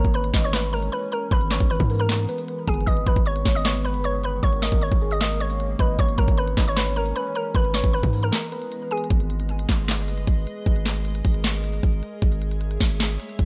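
A half-time trap groove from an overdriven drum kit, with a knocking kick, sharp snare, crisp hi-hats and handclaps, sits up front beside a punchy, heavy 808-style bass, giving this menacing, eerie hip hop fragment its weight. Over them, a woody, warbling mallet-like synth pluck carries the melody, shaded by a velvety, darker synth lead in the background with tremolo and tape echo, while a glassy, ethereal FM pad holds sustained chords in a digital ambience. After a brief break at 8.3 seconds, the pluck and lead drop out at 9.1 seconds, leaving the pad, bass and drums to carry the closing section.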